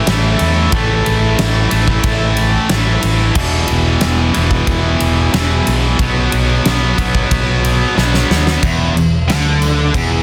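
A tight, bright distorted electric guitar opens this swaggering hard rock excerpt, its double-tracked, up-front riff moving through A5, E5 and B5 power chords at 91 BPM in a straight 4/4. A growly, amped fingered electric bass and a huge acoustic arena drum kit with a fat snare, punchy kick, and crash and ride cymbals join almost at once, filling a big, natural room with light reverb. A drum fill at 8.0 seconds leads into a new section at 8.6 seconds that lands on an E7 chord, and the powerful, dense, heavily limited sound keeps going as the cut ends.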